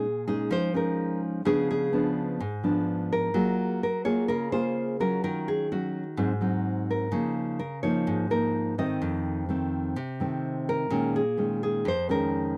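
A straight 4/4 pulse at 127 BPM carries this smooth, melancholic bossa nova in Bb minor, cut from a longer piece and tuned to A4 = 442 Hz. Two classical nylon-string guitars with fresh strings play up front for the full 12.6 seconds: a full-bodied, fingerpicked melody between Gb4 and Eb5 sits over a warm, thumb-plucked accompaniment reaching down to F2. The chords move from Bbm7 through Db7b9, Gbmaj9, Ebm9 and Ab7 to Db69 and F7 before returning to Bbm7, all captured in a dry, close 1970s-style studio sound.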